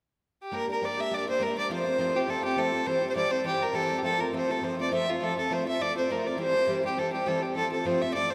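Celtic folk at a driving 204 BPM in 4/4 with a light swing on the eighths, this short fragment feels dark yet lively as it moves through Gm, F and C/E. A single fiddle carries the melody from 0.4 seconds, close and up front, with an earthy, rich tone, an airy bow and light vibrato. From 0.5 seconds a fingerpicked twelve-string acoustic guitar accompanies with shimmering, octave-doubled brightness and audible finger squeak, all set in the long, wet reverb of a church or concert hall.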